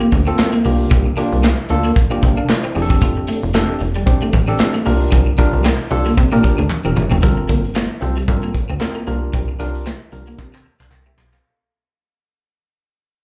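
Funky and slick, this early-eighties boogie funk fragment, heard as a live gig through a club PA, pairs a punchy, wave-folded analog bass and an up-front acoustic drum kit with a worn, slightly out-of-tune tine electric piano carrying slapback echo, a slightly broken-up, chorused electric guitar riff and a very quiet, hollow group handclap, with drum fills at 6.7 and 10.4 seconds as the music fades out from 7.2 seconds.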